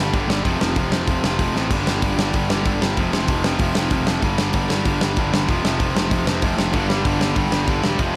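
A straight, driving 4/4 pulse at 191 BPM powers this upbeat, rowdy punk rock excerpt, with a big rock drum kit sitting up front in a roomy space, its tight kick, medium-tuned snare, hi-hat and crash cymbal punctuated by a fill at 1.6 seconds. A bright, tight distorted guitar pounds out a riff alternating F5 and G5 chords over a growly, fuzz-laden picked bass. At 6.7 seconds a second distorted guitar joins in the background alongside a very quiet, double-tracked raw garage guitar, all under light reverb.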